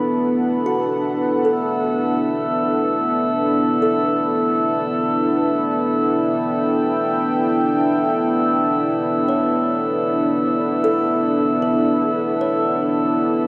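Drenched in a lush hall reverb and the warble of worn cassette tape, this ambient fragment feels reflective and melancholic as it drifts through slow chords from Bm to G6, Em and back. A mellow, detuned analog pad holds sustained chords up front, while a woody kalimba rings out arpeggios with tape echo in the background and an ethereal glass harmonica adds pure, beating tones above. A very quiet, string-like drone opens the piece with the others and stops at 1.5 seconds.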